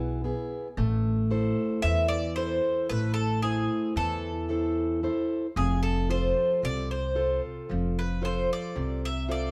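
A metallic, double-strung Greek bouzouki carries the melody up front in this dark, melancholic Greek folk fragment at 113 BPM in 9/8, backed by a full-bodied fingerpicked steel-string acoustic guitar with audible finger squeak and a woody, thumpy pizzicato upright bass, all three playing live together in a stone room with moderate reverb as the harmony moves from E to Am and then to F at 5.6 seconds.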